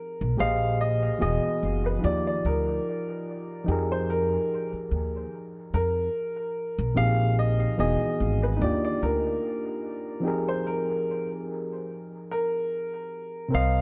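A thumpy, woody pizzicato upright bass sits up front from 0.2 seconds in this reflective, melancholic lo-fi hip hop excerpt, set at 73 BPM in 4/4 with a light sixteenth-note swing in F dorian, tuned slightly flat to A4 = 437 Hz. Above it, a slightly detuned, vintage upright piano carries the melody with long sustain, while a reedy, gritty overdriven electric piano plays accompaniment through a combo amp with cassette tape coloring. Both keyboards are low-pass filtered and trail dub echoes. The echo-heavy mix sits in a moderate echo chamber reverb with small room ambience, moving through chords such as Bb13sus4, Emaj9 and Fm11 before a break at 10.2 seconds.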